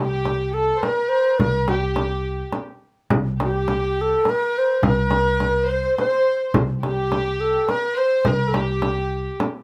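A breathy, mellow ney carries the melody up front in this festive Arabic maqam ensemble piece, its end-blown reed cane tone straight and tongued, with rolled-off highs, moving between G4 and C5. Behind it, a rich studio violin section plays a bowed second line over the same range, soft in attack and played sul tasto, so it sounds pure, floating and distant. An upright bass holds a low C2 with a woody, plucked pizzicato sound on steel strings, while a small, bright frame drum enters at 0.3 seconds and sits close in the mix. The tempo is 105 BPM in a straight 3/4, tuned to A4 = 439 Hz, and a moderate small-room reverb gives the ensemble a gently enclosed space. This cut from a longer piece stays in a single section for just under ten seconds, with a festive, warm mood throughout.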